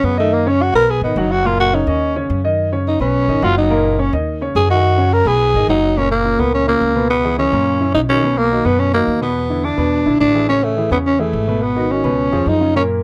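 Sunny and sophisticated, this short cut from a longer Afro-Cuban jazz piece moves at a brisk 212 BPM in a straight 4/4, centred on F# major. Up front, a growling tenor saxophone carries the melody with a dark, breathy subtone, raspy grit, scooped notes, vibrato and a smooth top, soloing through the first 6.0 seconds before continuing to 12.8 seconds. A grand piano with a natural, warm tone supplies the accompaniment beneath it, moving from gently shifting F#, B and D#m7 colours to a more travelling passage of Bmaj7, E7, Amaj7 and a closing C#9. An acoustic upright bass on gut strings plays pizzicato with a woody, thumpy sound, holding down the low end alongside the piano to the end at 13.0 seconds. Light reverb gives the trio a modest sense of space.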